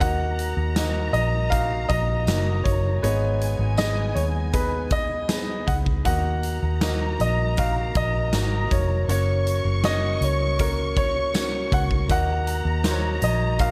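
A dry pop ballad fragment, melancholic and heartbroken, in which a baby grand piano with long sustain carries the melody over a lush, distant violin section adding a second line, a brilliant concert grand with audible action noise supplying accompaniment, a round, foam-muted electric bass sitting up front, a huge arena drum kit with a punchy kick and medium-tuned snare, and a jingly tambourine in the background from 0.8 to 13.0 seconds, all moving through Ebm, Abm and Gb chords.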